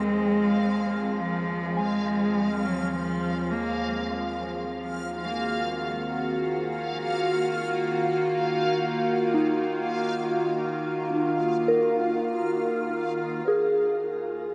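Serene and spacious, this ambient passage from a longer piece opens with a clear, vibrato-rich bowed cello melody up front that ends at 4.1 seconds, while an evolving, detuned wavetable pad with chorus, a soft, pure FM synth bell playing arpeggios, and a dreamy reversed granular texture fade in together through 13.5 seconds, held within a huge, wet reverb with shimmer on every part.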